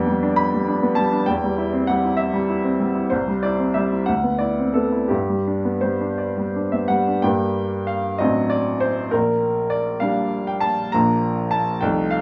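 In a 6/8 taken with free rubato at about 55-68 beats per minute in dotted quarters, this excerpt from a romantic classical character piece for solo upright piano moves from a hopeful G major into G minor at 7.2 s. The piano, tuned slightly low to A4 = 437 Hz, spans A1 to B5 with a woody, brilliant tone and long sustain, sitting up front in a small room with light reverb. Its harmony passes through G7/F, C/E, C, Dsus2 and G before turning to Gm, D7/A, Gm/Bb and Bb, and the passage breaks off at 12.2 s.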